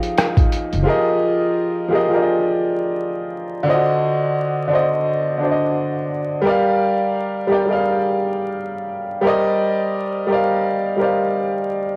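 Melancholic and reflective, this lo-fi hip hop excerpt sits at 86 BPM in F dorian with a gently swung 4/4 feel, carried by a clear, woody upright piano with long sustain and cassette coloring that plays through to 12.0 s over chords moving from Fm7 and Fm11 to D7b9, Gm7 and Cm9/G. A gritty, pitched-down boom bap sampler kit with a thumpy kick, hi-hat and rim click, steeped in 12-bit grit and tape, appears only in the opening 0.9 s, and a pizzicato upright bass with steel strings adds a brief woody Gb1 note just before that point. The home cassette recording is bathed in a wet spring reverb and vinyl crackle.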